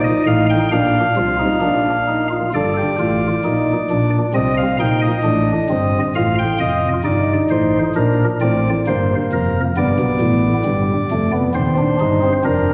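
The rhythm moves in a straight 4/4 at 67 BPM, giving this classical, baroque-style three-part fugue a driving yet solemn gait. A chamber organ plays alone throughout the 12.7 seconds, its soft flute stops carrying a gentle chiff at the start of each note and sitting up front in the sound. The voicing spans from a deep Eb1 up to G5, filling out the three contrapuntal lines with an intimate, chamber-sized character. A short opening passage moves from F7 to Bb before a new section begins at 2.5 seconds, passing through Gm7, Cm, F, Bb and G7 and arriving on Cm/Eb. The organ is bathed in the lush reverb of a scoring stage, which lends the fragment, cut from a longer piece, a spacious and reverent glow.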